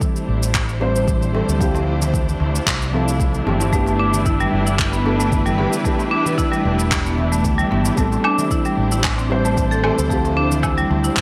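The rhythm sits at 113 BPM in 4/4 with a light swing on the sixteenths, driven by a deep, overdriven electronic kick and a layered, overdriven pattern of electronic shaker, handclaps and woodblock caught in gated reverb. This short cut from a longer piece of organic downtempo in A minor feels meditative and warm, moving through Am7, Dm11, G and Em7. A felt-muted upright piano plays soft, intimate accompaniment with subtle chorus, delay, shimmer reverb and sidechain pumping, while a dark, lush string section holds bowed chords with vibrato and portamento, pumping and shimmering in the distance. A fretless electric bass with a warm, amped tone enters at 0.3 seconds, and a small clay-shell darbuka struck with hard hands sits far back in a large room from 0.8 seconds. At 3.7 seconds a bright, woody marimba on rosewood bars joins with percussive arpeggios trailed by delay and shimmer reverb. 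The mix carries a moderate plate reverb and small-room ambience within a bright, 1980s-style digital production.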